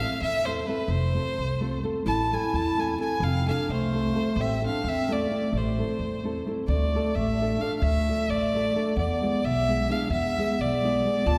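A single bowed violin leads this restless, virtuosic stretch of Balkan folk music, its clear, biting tone carrying a smooth top, vibrato and a slapback echo as it sits up front in the high register. The tune moves in a quick 5/8 at 260 beats per minute in eighths, with a straight feel in A harmonic minor, circling between Am and F before turning to Dm at 6.7 seconds and settling on E at 9.0 seconds. Beneath it, a nylon-string guitar plays thumb-plucked, classical-style accompaniment with a warm acoustic body, while an upright bass with steel strings adds woody pizzicato low notes. At 2.1 seconds a dark clarinet joins with a soft attack and a second line in a classical manner, sounding distant and roomy. The group is heard from further back in a reverberant concert hall, giving the ensemble a spacious, wet sound in this short cut from a longer piece.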